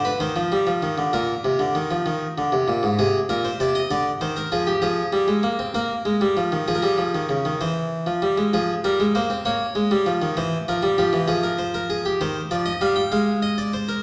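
Classical baroque-style two-part invention in a straight 6/8, this serious, contemplative passage cut from a longer piece features a solo French-style harpsichord, plucked, nasal, thin and bright, spanning Ab2 to G5 and settling into a minor key by 4.8 seconds, its chords winding through diminished and dominant colors within the lingering reverb of a recital hall heard from further back in the room.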